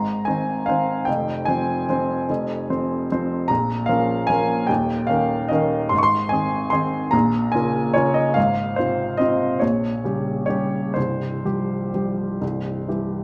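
Close, detailed miking captures a clear, woody upright piano with audible action noise and long sustain, set up front in a moderate recital-hall reverb, as it plays an elegant, wistful classical waltz alone in a flexible, rubato 3/4, its harmonies drifting from Ab through Fm and Bbm before settling on C at 12.4 seconds in this short excerpt cut from a longer piece.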